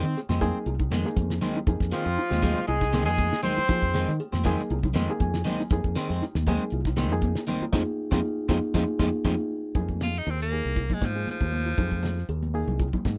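Hypnotic and defiant, this afrobeat excerpt in F minor at 119 BPM rides a lightly swung groove from a damped 70s drum kit with a fat snare and tight kick, a round, dark fingered bass, high-tuned congas in the background, woody kalimba arpeggios, twangy slightly broken-up guitar stabs and a reedy, worn electric piano that adds fills, while a smooth-topped trumpet leads over a tenor saxophone second line from 1.9 to 4.2 seconds, a band accent and drum fill lead into 9.8 seconds, and the raspy, gritty tenor saxophone takes a forceful solo, all captured in a dry, close 1970s-style studio sound.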